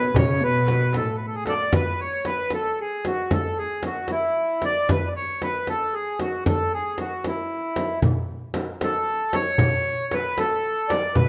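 An accordion carries the melody from the first moment, reedy and airy with a slow beating in its tone, sitting up front, while a dark chamber cello section adds a bowed second line with a gut-string, period-style sound and light vibrato that is heard only until 1.2 seconds. This is an Arabic maqam ensemble piece in A maqam ajam, moving in a festive, passionate 6/8 at 76 BPM counted in dotted quarters with a straight feel. A deep frame drum enters almost at once and stays up front to the end, while a crisp metal-shell darbuka, played with soft hands, sits distant in the background, dropping out after its opening moments and returning at 8.0 seconds. The accordion line ranges from E4 to D5 and remains the focus as the music shifts into a second section at 1.7 seconds. The sound is close and detailed, set in a moderate recital hall reverb, and the passage is cut from a longer piece.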